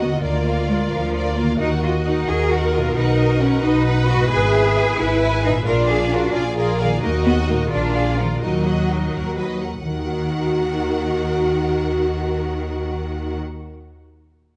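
Sneaky and magical, this cinematic cue in 6/8 sets bowed violin sections, one carrying the lush, focused, vibrato-rich melody and a more distant one tracing a second line, over a viola section accompaniment, a cello section and an up-front double bass section sharing the bass. A dark French horn section holds sustained chords in the background while a thumb-plucked concert harp rings out arpeggios, the harp lingering until 13.7 s after the other parts stop at 13.4 s. A moderate scoring-stage reverb gives the ensemble a roomy sheen as the minor-key harmony leans on dominant-seventh turns.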